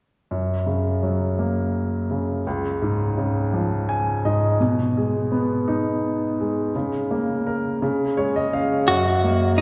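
A clear baby grand piano opens this heartfelt, swaying pop ballad in 6/8 at 56 BPM in F# major, its intimate, natural tone carrying long sustain and audible action noise as it accompanies from the low bass to the upper register, with fills at 3.5 and 7.8 seconds over chords moving from F# through C# and G#m/B to A#m/C#. At 8.9 seconds, as the harmony returns to F#, a clean, picked electric guitar recorded direct enters up front with a compressed melody in a narrow middle range. A wet church reverb with a long tail surrounds the sound, which is cut from a longer piece and has a soft, rounded top end.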